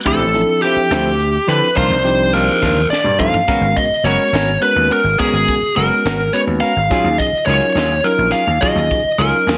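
Nocturnal and intense, this short cut from a longer electric jazz fusion piece moves at 70 BPM in a straight 6/8. A biting, overdriven lead guitar carries the melody up front, its bright picked tone marked by a slapback echo. Beneath it, a bell-like tine electric piano supplies clean, direct accompaniment, while a semi-hollow electric guitar adds fingered stabs with subtle chorus from the background. A vintage slap bass gives an amped, punchy low end, and a crisp fusion drum kit with a high-tuned snare and pumping small-room sound drives the groove, with a drum fill from 2.6 to 3.5 seconds leading into a new section. The harmony moves through rich minor eleventh chords, from Dm11 and Cm11 to Abm11 and Ebm11, all set in light studio reverb.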